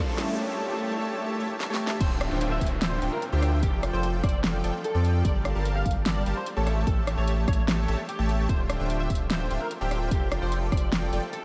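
A very quiet riser and downlifter open this dreamy, emotional half-time future bass piece, as a brief build-up with drum fills, the pop kit bringing a fat snare and metallic hats, leads into a drop at 2.0 seconds, where a punchy electronic kick joins the thick, saturated sine sub bass, a bold, detuned sawtooth polysynth riff that pumps with sidechain, analog chorus and delay, and a twangy, slightly broken-up electric guitar melody set in the background with ensemble chorus and delay, in a mix soaked in huge ambient reverb over Dm11, F69, Gm7 and A7 chords.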